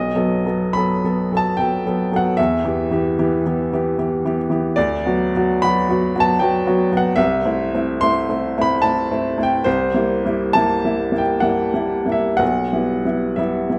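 An intimate upright piano opens on a dominant chord and sways through a yearning, melancholic romantic nocturne in E minor at 59-80 BPM in a rubato 3/4, its woody tone and audible action noise sitting up front against the long wash of a recital hall, in a passage cut from a longer piece.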